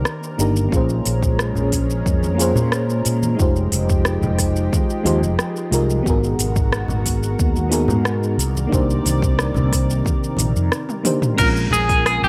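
Relaxed and smooth, this short sunset chillout excerpt at 90 BPM in Bb dorian rides a thick, detuned unison pad with chorus, a dark, round fretless bass, a soft, warbling FM electric piano with chorus and digital delay, layered deep house drums with smooth hats, a deep electronic kick and low-tuned congas in the background over minor ninth chords, until a drum fill at 10.9 seconds brings in a bright, clean electric guitar melody, up front with spring reverb, at 11.4 seconds.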